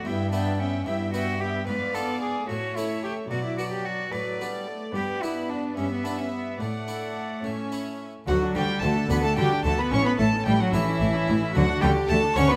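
In a straight 6/8, this festive baroque-style concerto movement sets a rich, gut-strung violin section on the melody beside an up-front solo cello, while a reedy second violin line, period-style violas and a brilliant plucked harpsichord with octave strings fill in over a nasal cello section bass, joined at 8.3 s by a smooth-topped double bass section, all captured close and detailed in a moderate recital-hall reverb.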